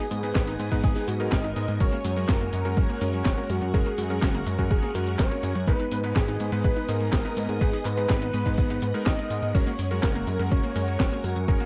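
Italo disco in G# minor at 124 BPM, this nostalgic, melodramatic fragment sets a thick, detuned unison lead with tape echo over swirling phased string-machine chords, a round, very quiet analog pluck arpeggio, clangy, cutting electric grand piano stabs, a fat sawtooth bass and a punchy up-front kick, with a gated 80s drum machine supplying snare, handclaps, hi-hat, cabasa and crash, all in a dry, close 1970s-style studio sound as G#m and F#add9 alternate.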